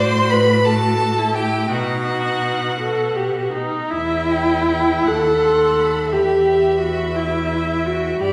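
The viola sits up front in this yearning, elegiac slow movement for string quartet, its warm, expressive bowed line full of vibrato and portamento as it carries the accompaniment. Above it, one violin takes the melody in a clear, focused voice, while the second violin adds a rich, more distant supporting line. The cello anchors the bass with a smooth, even tone and steady vibrato. The music moves in a rubato 6/8 at roughly 51-59 dotted-quarter beats per minute in E minor, drifting from Am13 to B before settling onto Em at 3.9 seconds, then passing through B/D# and back to Em. A recital-hall reverb places the quartet further back in the room, giving this short cut from a longer piece a spacious, romantic glow.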